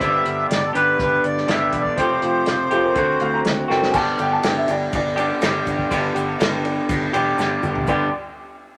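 Folk rock with a heartland rock lean, this short excerpt moves at 122 BPM in a straight 4/4, rooted in G mixolydian before settling into G major at 3.9 s, with a warm, open-road mood. A reedy, up-front accordion with slow beating carries the melody until 3.4 s, while a slightly broken-up, lo-fi electric guitar through a small old amp plays a compressed riff with spring reverb. Beneath it sit a boxy, ladder-braced acoustic guitar in the background, a round, foam-muted electric bass, and an unplugged drum kit with dark cymbals, punchy kick and bundle sticks that adds fills at 3.7 s and near the end. A woody upright piano enters with a second line at 2.7 s, and a grainy egg shaker joins in the background from 3.9 s, all set in a wet small room.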